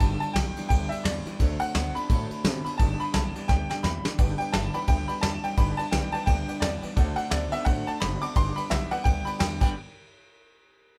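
Rowdy and rollicking, this rockabilly clip swings at 172 BPM in G major, cycling between G and D7. A brilliant, worn upright piano carries the melody with short, open notes that sound slightly out of tune, while an electric guitar through a small old amp plays a twangy, slightly broken-up picked riff. Underneath, a picked archtop acoustic guitar with old strings adds boxy accompaniment in the background, and a pizzicato upright bass on gut strings gives a woody, thumpy low end. A soft brush drum kit sits up front with a smooth, dark, rolled-off sound and a punchy kick, and it plays a fill at 3.5 seconds. At 4.2 seconds a jangly, detuned honky-tonk upright piano joins in the background, and the whole band plays together live in one room with light reverb.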